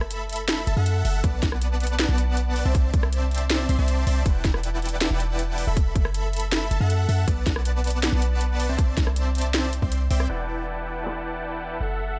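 A huge, thick detuned supersaw carries the riff in this dreamy, lush future bass excerpt, its unison sawtooth layers sitting over a sub octave with a fast attack and compressed sustain, shaped by sidechain pumping, a low-pass filter and digital delay. Underneath, a deep, boomy 808-style bass with a sine body and noise layer sits up front, decaying darkly and pumping to the same sidechain. The tempo is 159 BPM in a half-time 4/4 feel in E minor, and the chords move through lush extended shapes such as F#m7, Bm7, C69 and Em11. A trap kit with a sharp snare, metallic hats, handclaps and rim clicks runs until 11.1 s, with its snare, hats and cymbals low-pass filtered, while a hard-clipped electronic kick punches up front from 1.2 s to 9.9 s. The drop fills the first 10.3 s before a brief closing passage, and the dry mix carries a faint mains hum.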